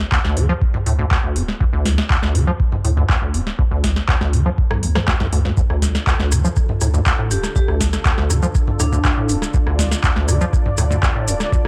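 This trippy, hypnotic acid house excerpt opens with a round, dark analog bass with sidechain pumping, set beneath a booming drum machine of crisp snare, metallic hats, handclaps, rim click and toms. An electronic kick with a deep analog thump arrives almost at once, along with a squelchy, hollow square-wave acid riff whose resonant filter plucks carry lush chorus and sidechain pumping. Overdrive colours the drum machine, the kick and the up-front acid line alike, and the snare, clap and hats have a short room around them. After a drum fill, a smooth, detuned analog pad enters at 5.6 seconds with soft-attack sustained chords, chorus and a moving notch, joined by grainy, mellow maracas played close and dry. From 7.3 seconds a bright, ringing vibraphone with medium hard mallets and motor vibrato adds a brief melody through analog delay, over a dry, gritty hardware sound with cassette tape character and light reverb.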